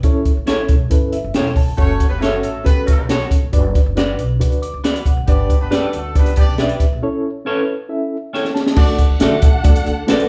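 A straight 4/4 pulse at 137 BPM drives this joyful, uplifting slice of uptempo 1960s-style soul in D major, cut from a longer piece. A compact cocktail drum kit sits up front with a high-tuned snare, tight kick, hi-hat and crash, its sound dark and rolled-off on top, while a woody pizzicato upright bass anchors the low end. A reedy electric piano with fast tremolo carries the accompaniment through its built-in speakers, and a clean, picked semi-hollow guitar adds stabs from 0.5 seconds. A warm horn section with light vibrato and octave doubling plays a loose, jazz-style second line from 1.8 seconds, moving over a progression from A through F#m, Bm/F# and G. After a break and a drum fill, a bowed string section takes over the second line at 8.8 seconds with expressive vibrato and portamento as the music lands on D, all captured as a band playing live in one room with a moderate studio reverb.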